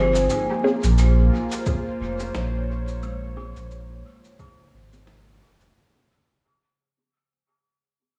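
A swung sixteenth-note feel carries this hazy, meditative ambient dub fragment, where a soft electronic kick arrives at 1.7 s over a round sub bass, muffled pitched-down cabasa and snare trail dub echo, a smooth, warbling analog pad holds sustained chords with subtle chorus, a woody kalimba with 12-bit sampler grit spins arpeggios through a low-pass filter and dub echo, and a resonant, wave-folded chord stab with phaser sits in the background, the kalimba and stab both moving under filter sweeps in an echo-heavy mix with vinyl crackle that fades out from the start.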